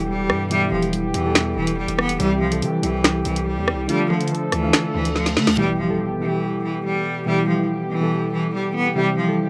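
Drill hip hop in a dark, tense half-time feel at 142 BPM in E phrygian, where a bright, intense solo cello carries the melody with light vibrato over warbling, detuned lo-fi synth keys with chorus and a tight, clear brass section holding sustained chords, while a heavy, saturated 808-style bass and an up-front drill kit of woody snare, warm hats, finger snaps and rim clicks with 12-bit sampler grit drive the first 5.6 seconds before a drum fill and reverse cymbal lead into a distant electronic impact, all in a rough home-demo mix cut from a longer piece.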